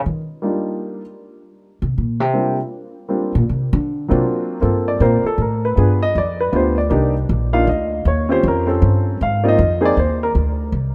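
Cool and moody, this short cut from a longer jazz piano trio piece swings at 157 BPM in 3/4, in G minor, moving through rich chords such as Ebmaj9, D7alt, Gm11 and Eb13. A pizzicato upright bass with a woody, thumpy tone sits up front and takes a solo for the first 4.6 seconds, while a baby grand piano, intimate and natural with audible action noise and short sustain, carries the melody and takes its own solo from 4.6 seconds. Light reverb colours a rough home-demo mix.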